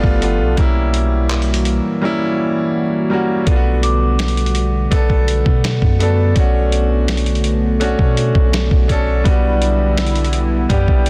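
A straight 4/4 groove at 83 BPM from a gritty, compressed sampler-style kit, with a thumpy kick, snare, hi-hat and handclaps up front, drives this late-night, sensual contemporary R&B excerpt in B minor, with the drums dropping out from 2.0 to 3.5 seconds. A deep, boomy 808-style bass and a clear, long-sustaining grand piano carry chords such as G9, Gmaj7/B and Bm9, while a dark, shimmering pulse-width pad with chorus pumps under sidechain. From 3.8 seconds a delicate, bell-like celesta rings in the background through tape echo, all set in digital ambience with a dense, heavily limited modern master.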